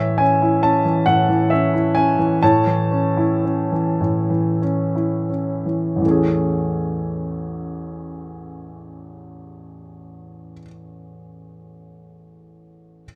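A clear, intimate baby grand piano plays alone through this 13.1-second excerpt of tender, lyrical classical music in A major, moving in a rubato 6/8 at a slow 26-46 BPM counted in dotted quarters and slowing through its opening 6.0 seconds on an A chord before shifting to Amaj7, its range spanning A1 to A5, with close, detailed miking that places the instrument up front, catches its audible action noise and lets its long, natural sustain ring in light reverb.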